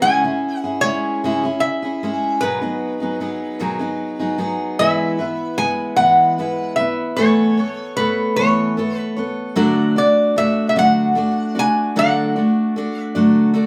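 A gentle, warm folk excerpt in a slow 6/8 at 50 BPM features a nasal, metallic lap resonator guitar, played with fingerpicks and slide, carrying the melody over a full-bodied picked dreadnought steel-string guitar with audible finger squeak, both up front in a small, reverberant room as the harmony moves from C#m and B6 to E, Aadd9/E and D.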